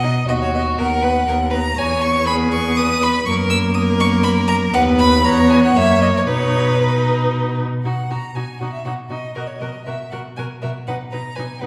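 Heard from further back in a wet recital hall with a 1.3-second reverb, this cheerful, lively classical-period movement for string quartet moves briskly at 120 BPM in 3/4 and B major, cut from a longer piece. A rich first violin sits up front and carries the melody with smooth, even vibrato, while a clear, focused second violin plays a second line beneath it and a distant viola adds expressive accompaniment with vibrato and portamento. A close cello, also up front, anchors the bass, with all four bowed parts playing throughout as the harmony moves among B, C#m7 and F# chords across two statements of the opening section.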